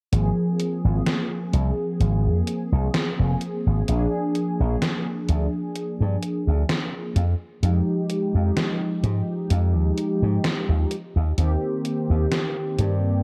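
Nostalgic and woozy, this short vaporwave excerpt cut from a longer piece drifts along at an unhurried, lightly swung pace in four. A slap bass pushed through an envelope filter anchors the low end up front in the mix with a bright, punchy, amped tone, playing from the start at 0.1 seconds to the end. Mellow synth brass carries the harmony with a round, detuned sawtooth character, a filter sweep and a subtle chorus and analog delay, moving through lush chords from Ab69 to Bb7, Fm9 and Eb6. A gated 80s digital drum machine keeps time on hi-hat and snare, its sampler-style snare caught in gated reverb and sounding tape-warmed, as if re-recorded in a large room. The production is dark, with light reverb and a digital ambience wrapping the three up-front parts.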